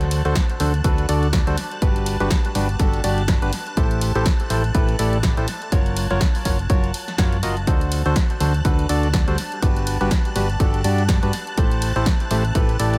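A hollow, percussive organ stab riff leads this feel-good, uplifting piano house clip, treated with chorus, dub echo and sidechain pumping and set up front, over shimmering vintage string-machine violin chords that pump under an ensemble chorus. A round, dark hollow-body electric bass and a punchy analog drum machine of hi-hat, ride and snare with dub echo play from the start, and a punchy electronic kick enters at 0.4 seconds to drive the swung groove. The chords cycle through D7, Gmaj7, Am7 and F#maj7 in a dry, echo-heavy mix.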